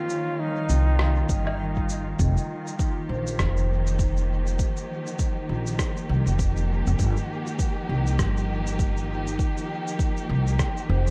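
A dark, small-room sound frames this spacious, hazy ambient dub fragment: a classical-style solo trombone with vibrato sings a brief tape-echoed melody until 1.9 seconds over smooth, bowed chamber strings and ringing, metallic vibraphone arpeggios set in the background, while a very quiet reversed, granular swelling texture drifts through the opening, muffled sampler-style shaker, rim click and woodblock carry dub echo, a woody pizzicato upright bass sits up front from 0.7 seconds, and an overdriven, deep electronic kick arrives at 1.3 seconds as the harmony moves from Gm7 to F9sus4.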